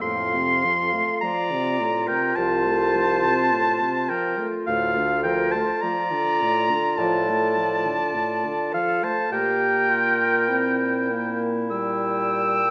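Tender and lyrical, this slow romantic movement for wind quintet unfolds at 52 BPM in 4/4 with a flexible rubato feel, set in F major and cut from a longer piece. The silver concert flute carries the melody between A4 and G5 with an airy, straight tone and crisp attack, though it sits back at a distance. Above it, the oboe spins a second line from F5 to E6, its vibrato and smooth top placing it up front as the most present voice. The clarinet adds a warm accompaniment in a narrow band from E4 to G4, while the French horn offers mellow, roomy support from A2 to C4, and the bassoon anchors the bass from C2 to Bb2 with a light vibrato. The harmony moves from F to Dm at 4.7 seconds and to Gm/Bb at 9.3 seconds, all within a single section lasting 12.7 seconds. A wet recital hall reverb with a 1.8 second decay surrounds the ensemble, lending the classical-style playing a soft, spacious glow.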